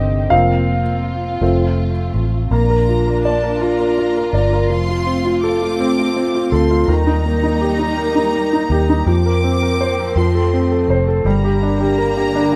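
A tender, heartfelt six-eight pop ballad, cut from a longer piece, is carried by an up-front concert grand piano with audible action noise and deep bass, over a lush, woody string section holding sustained chords and a dark, round, foam-muted electric bass with a punchy edge. At 2.5 s a violin section enters with a high second line, played sul tasto with light vibrato, as the chords move from Fsus4 and F through Bb, Eb and Gm. A small room's moderate reverb gives the sound the feel of a rough home demo mix.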